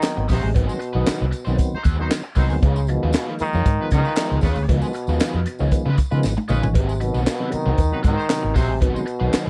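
Funk at 116 BPM in a straight 4/4, this short playful, gritty excerpt comes from a longer piece and sits on a vamp of Ab7#9 moving to Db9 at 2.6 seconds and back at 6.8 seconds. A warm trombone carries the melody in a low register with vibrato and scooped notes, while a clear, tight horn section adds a second line from 0.3 seconds, touched with tape echo. A compact cocktail drum kit sits up front with a high-tuned snare, tight kick, hi-hat, toms and handclaps, playing a fill between 6.2 and 6.8 seconds, and a jingly tambourine rides in the background. The dark, round, punchy muted fingered bass enters at 0.2 seconds, up front alongside the drums. A raw garage guitar with wah and overdrive plays picked accompaniment, and a fat tonewheel organ throws in percussive stabs through light overdrive, chorus vibrato and a slow rotary speaker. The sound is dry and close, like a 1970s studio recording with little reverb.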